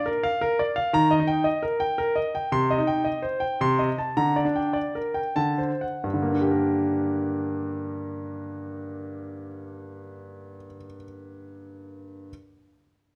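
A bright, brilliant grand piano plays alone in this short cut from a longer baroque-style suite movement in G minor. Set in 3/4 with a rubato feel, the tempo moves between 87 and 115 BPM, and the music broadens by slowing down from 1.7 to 6.1 seconds. The harmony travels from Bb through Eb, C minor and a diminished chord over C to G minor over D and a D7, settling on G minor at 6.1 seconds as a new section begins. The piano, spanning G2 to C6, sounds intimate, polished and up front, with long sustain and audible action noise from the instrument itself. Close, detailed microphones and a moderate recital hall reverb give the flowing, introspective playing a present quality.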